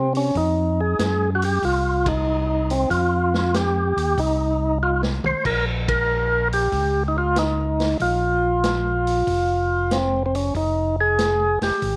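Smoky and soulful, this excerpt of a soul jazz organ trio swings at 94 BPM in F minor, moving from F7sus2 to Bbm and on to Fmadd9. A clean, percussive tonewheel organ with second harmonic percussion and key click carries the melody up front through a slow rotary speaker. Beneath it, a fat, lightly overdriven tonewheel organ with chorus vibrato plays the bass, while a vintage acoustic drum kit with dark cymbals, a punchy kick and a rolled-off top enters at 0.1 s, joins band accents near 1.9 s and plays a fill at 4.8 s, all in a moderate spring reverb with studio ambience.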